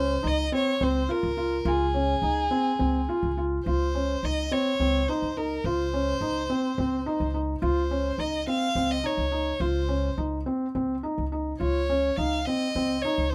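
A dry, close-sounding excerpt of playful, shimmering contemporary chamber music in 7/8, where a rich, smooth bowed violin with vibrato sings the melody over soft, mellow arpeggios from a felt-muted upright piano and a woody, thumpy pizzicato upright bass, all three sitting up front for the full 13.3 seconds as the harmony shifts from Dbmaj7 to Dbmaj7sus2 at 3.7 seconds.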